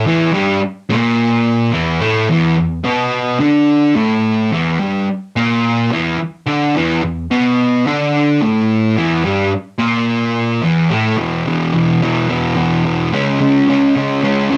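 A straight 4/4 rock groove at 108 BPM carries this swaggering, rowdy fragment of a longer piece, where a lone distorted, double-tracked fuzz guitar, picked up front and ranging from E2 to D4, drives an E5 power chord before shifting into a new section at 11.2 seconds and landing on C#5 at 13.1 seconds, all set in a small room's moderate reverb as a home recording on cassette.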